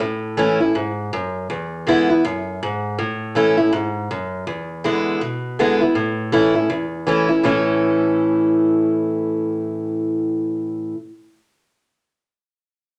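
Rock with a rollicking, retro mood, played at 161 BPM in 4/4 with a swung eighth-note feel, in A major and tuned slightly low, to A4 = 439 Hz. The only part is a picked acoustic archtop guitar playing solo from 0.0 to 11.0 seconds, ranging from E2 to E4. Its tone is bright and boxy, and it sits up front in the mix. The harmony alternates between A and E7 through three short sections, with the changes landing every second and a half or so, starting at 0.0 seconds. A wet large-studio reverb with a 0.8-second decay surrounds the guitar, and this brief cut is taken from a longer piece.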